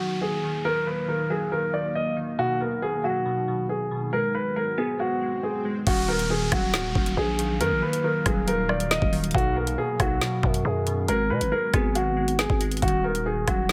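A half-time drill groove at 138 BPM in 4/4 arrives at 5.9 seconds, when the electronic kit's knocking kick, woody snare, metallic hi-hats, rim clicks and crash cymbal come up front alongside a growling, buzzy 808-style bass with a fast attack and decaying tail. Before that, this ominous, cold hip hop passage in Eb minor opens on a mellow, vintage-toned grand piano carrying the melody up front through a low-pass filter. Beneath it, glassy digital keys with chorus and a filter sweep play the accompaniment, while a deep, moody ambient pad holds sustained chords in the background with chorus and its own reverb. An electronic downlifter and swell sound effect colours the opening, with the swell running from 4.7 seconds into the drop at 5.9 seconds. The harmony cycles through Ebmadd9, B and Abm7, and the whole fragment, cut from a longer piece, sits in light reverb and digital ambience.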